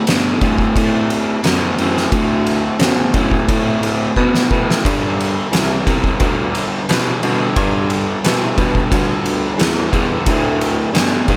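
A raw, overdriven garage guitar riff opens this gritty, driving blues rock and southern rock excerpt, its double-tracked, lo-fi electric tone sitting up front alongside an oversized, low-tuned drum kit with a punchy kick, fat snare and dark cymbals in a bright, pumping stone room. From the start, a breathy baritone saxophone carries the bass line with dark subtone and vibrato and a smooth, jazz-style top, while a drum fill at 4.2 seconds leads the harmony from D to G at 4.8 seconds. The grimy, saturated kit and studio ambience give the straight 4/4 groove a heavy, live-room weight before a D5 chord arrives at 10.3 seconds.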